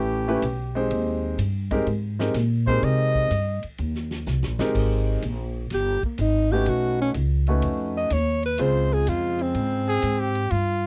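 A dry, close studio sound in a 1970s style, touched with light reverb, frames this short cut from a longer small-group swing and bop piece in Ab major, moving at a relaxed 125 BPM in 4/4 with a swung eighth-note feel. The trumpet opens with a brief solo in a warm tone with light vibrato, playing from the start until about 3.6 seconds and returning near the close, while a clear, polished grand piano comps with long sustain until 9.9 seconds. Underneath, a woody, growly upright bass sits up front for the whole passage, and a vintage drum kit with a fat snare, tight kick and rolled-off top keeps time on hi-hat, ride and crash, set back at a lower level. A drum fill around 4.3 seconds leads into the second section, where the alto saxophone enters at 5.7 seconds with a clear, close-miked vibrato tone to carry the melody. The harmony drifts through rich extended chords such as A9, Abmaj9, Eb6, B9 and Dbmaj7, giving the whole a relaxed, warm mood.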